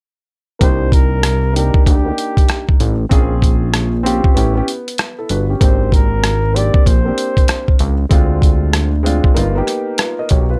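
Jazz-hop at 96 BPM with a swung 16th-note feel in C minor, this cool, nocturnal cut opens on Cm9 and moves through lush extended chords to G7alt, as a gritty, pitched-down boom bap sampler kit with a thumpy kick and rim click sits up front beside a fat, detuned sawtooth analog bass with a filter sweep, while a dark, vintage concert grand with audible action noise comps underneath and a breathy, whispered flugelhorn with gentle vibrato carries the melody until 7.8 seconds, all in a dry, intimate sound.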